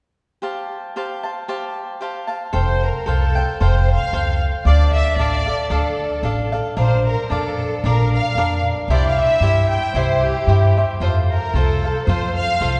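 A wet church reverb with a long 2.9-second tail surrounds this festive, romantic mariachi excerpt in F major, which moves at 113 BPM in 2/4 with a light swing and a rubato feel. A crisp, picked cavaquinho opens alone at 0.4 seconds, picking out the accompaniment over an Fadd9 chord. At 2.5 seconds the upright bass enters with woody, pizzicato notes on steel strings, and a moment later a symphonic violin section takes the melody with smooth, bowed lines and vibrato, sitting up front. The harmony then moves through Dm, Bb and C before returning to F. The bass carries the most weight in the mix, while the violins and cavaquinho share a gentler level under the resonant hall sound.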